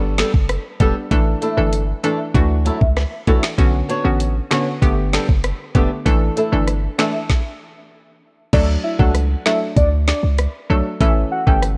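Dancehall in D major at 97 BPM, bouncy and sunny, where a hollow, detuned square-wave pluck with chorus and a deep, boomy 808-style bass sit alongside an up-front electronic drum kit of knocking kick, woody snare, metallic hats, finger snaps, rim clicks and crash, while a fingerpicked flamenco guitar plays delayed arpeggios until 7.1 s; a brief stop at 7.3 s gives way at 8.5 s to a round, dark octave-layered synth lead with chorus, phaser, delay and vibrato, and the mix carries light reverb and the worn, warbling pitch drift of old cassette tape.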